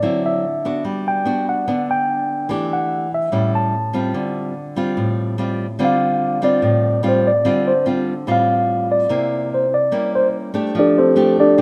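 A mellow, clean tine electric piano carries the melody up front through a wistful, intimate bossa nova cut from a longer piece in D minor at 146 BPM, with a full-bodied, fingerpicked nylon-string guitar accompanying throughout with audible finger squeak, moving through chords such as D9, Gmaj7, A7 and C7b9 beneath a moderate plate reverb and lossy compression artefacts.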